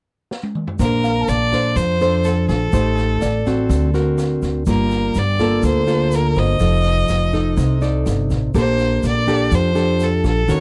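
A bright, intense violin carries the melody up front in this sunny, romantic bossa nova excerpt at 124 BPM in Bb major, its single bowed line airy and full of vibrato. A dark, fingerpicked nylon-string guitar and a woody, thumpy pizzicato upright bass sit close beside it, while a warm grand piano with long sustain lingers in the background from 1.0 to 8.6 seconds. An open jazz drum kit starts with a short fill at 0.3 seconds before the band enters at 0.8 seconds. The kit's boomy kick, rim click, medium-tuned snare and toms stay in the background, along with a grainy, distant egg shaker. The harmony moves from Bbmaj9 through Am7b5, D7b13, Gm9 and F13 to Bbmaj13, all captured in a dry, close 1970s-style studio sound.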